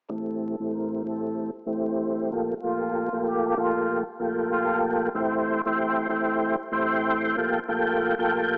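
A gritty, dark hip hop fragment at 95 BPM in 4/4, with a swung sixteenth-note feel, cut from a longer piece. A smooth tonewheel organ sits up front through the whole passage, its chorus vibrato and slow rotary speaker adding movement while a cassette-tape tint softens its edges as it moves between Am7 and Gm7/Bb. A trumpet with plunger mute carries the melody only from 0.1 to 4.8 seconds, playing in a vintage jazz style with a breathy, whispered tone, a soft attack and vibrato, its wah-wah colour trailed by digital delay and kept quiet and intimate beneath the organ. A filter sweep runs across the full length of the passage, and a moderate plate reverb gives the space a long tail. Vinyl crackle and a small-speaker sound colour the recording.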